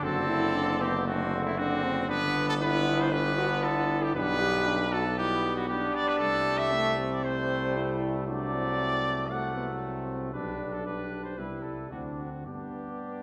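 A mellow trumpet carries the melody up front in this stately, triumphant passage for brass quintet, its light vibrato set in a roomy, distant space. Beneath it a second trumpet sings a warm inner line, while a clear French horn and a present trombone, the latter sitting in the background, fill out the accompaniment. A punchy, close-miked bass trombone anchors the bottom, standing up front alongside the lead. All five play together in a straight 4/4 classical style for the full 13.2 seconds, with the harmony moving from D7/F# through G, G/B and Am7/C before closing on G. A wet concert hall reverb lends the passage a grand sense of space, and it is cut from a longer piece.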